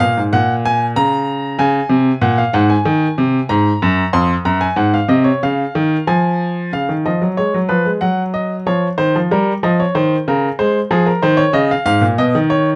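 Lightly reverberant and intimate, this 12.8-second fragment of a longer piece is a serious, contemplative baroque-style two-part invention at 94 BPM in 4/4, played by a solo baby grand piano that sits up front with a clear, natural tone, long sustain and audible action noise as it moves through harmonies such as F#/A#, G#7, C#7 and D#7, shifting into a new section at 6.7 seconds.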